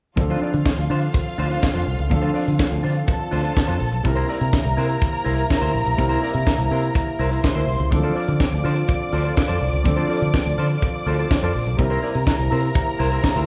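Glamorous and sultry, this brief disco excerpt at 124 BPM in D minor moves between Dm7 and C7 with a tight, up-front funk drum kit and its high-tuned snare, a punchy, foam-muted fingered electric bass, a clear, lush bowed string section carrying the second line, a dark, clean semi-hollow electric guitar with spring reverb, a smooth vintage grand piano accompanying in the background, and a classical-style French horn section holding sustained chords behind them, all playing live together in a large studio room.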